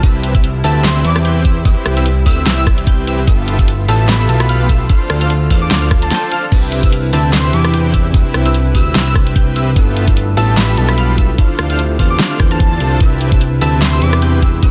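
A dense, heavily limited modern mix opens this bright, euphoric future bass excerpt in C major at 148 BPM with a half-time, lightly swung feel, where a knocking electronic kick and a layered pop drum kit with a fat snare and crash drive an up-front, saturated analog bass and a huge, compressed supersaw riff, all pumping against the kick, while a lush, echoing pluck arpeggio, a veiled, very quiet muted string section, an airy, dreamy lead melody from 0.6 s with tape-like chorus and delay, and a mellow tine electric piano from 6.5 s fill the background over Cmaj7, G13 and Dm7 chords.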